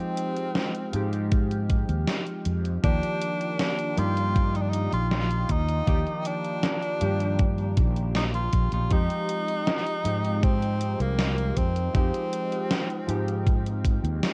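An edgy, forceful tenor saxophone with tape echo carries the melody over warbly, detuned lo-fi synth keys in lush chorus, a very quiet tape-like pad, a growly fretless electric bass, a thumpy electronic kick and a gated 80s digital drum machine in this woozy, nostalgic vaporwave excerpt at 79 BPM in F dorian, moving from Fm9 to Ebmaj9 and back with a dark cassette-tape haze.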